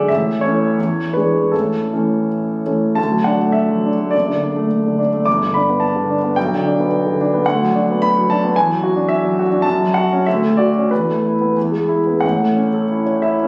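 A lone concert grand opens this brief romantic character piece, its tone intimate and polished, with the click of the action audible beneath the notes. The music moves in a gently pushed and pulled duple metre, its rubato lending a hopeful, warm mood as the harmony settles on A and E7 before turning toward D at 3.0 seconds. Through the longer middle passage the chords drift through G, Bm/D, E9, F#m and Dmaj7, pausing on Esus4 and E before the opening idea returns at 12.2 seconds. The piano sits up front and present, reaching from deep bass notes up into its upper register, each tone carried by long sustain. A moderate recital-hall reverb surrounds it, and the phone captured in the room gives the sound a close, personal quality in this short fragment of a longer work.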